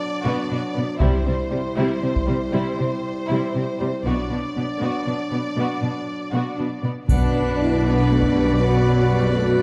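This heroic, epic orchestral film-score passage is cut from a longer piece and opens on a lush violin melody with focused vibrato over a distant, roomy French horn section holding mellow chords. Almost at once, a dark studio violin section adds an expressive second line with portamento in the background, while rich, even violas fill in the accompaniment and expressive cellos take up the bass. At 1.0 seconds a woody double bass section deepens the low end, and a taiko ensemble struck with heavy sticks thunders in a small room, driving a build-up in a compound metre. At 7.1 seconds the arrangement broadens: a brilliant, full pipe organ plenum with romantic voicing joins a tight, very quiet trombone section on sustained chords. Also entering there are smooth-topped trumpet stabs in the background, a close timpani hit with medium mallets, a faint triangle and a second taiko burst. The strings keep a bowed vibrato throughout, and the dark, warm production sits in a moderate concert-hall reverb.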